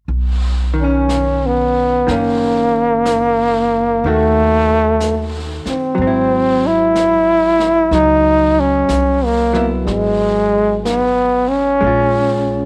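A gently swung 4/4 pulse from a small-room brush kit and woody pizzicato upright bass opens this tender, late-night jazz ballad at 0.1 seconds, joined by a dark, clean, compressed hollow-body electric guitar in accompaniment from 0.7 seconds and a brilliant, punchy trombone carrying the forceful solo melody up front from 0.8 seconds with vibrato and scooped notes, while the drums, guitar and trombone take on a cassette-tape tint within studio reverb and a homespun cassette recording.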